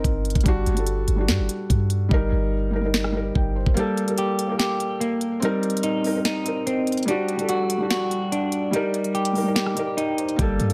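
Hip hop in a trap vein, this melancholic, brooding excerpt moves with a half-time feel over chords that sit on a G pedal, shifting from D/G to Eb/G and through Gmadd9 and Cm7/G. A felt-muted upright piano carries the accompaniment throughout, its soft, mellow tone dulled further by a low-pass filter and intimate enough that the action noise of the keys comes through. An electronic trap kit sits up front with a knocking kick, sharp snare, crisp hats and rim clicks, though the hi-hats drop out from 2.1 to 3.8 seconds and the kick falls away from 3.8 until 10.4 seconds. A deep, boomy 808-style bass with a clean sine tone and decaying notes anchors the opening, stops at 3.8 seconds, and returns briefly at the close. From 3.8 seconds a dark, fingered semi-hollow electric guitar enters with arpeggios, its hollow-body tone colored by a warbly pitch drift, a low-pass filter and digital delay. Light reverb and a digital ambience give the recording a faint sense of space.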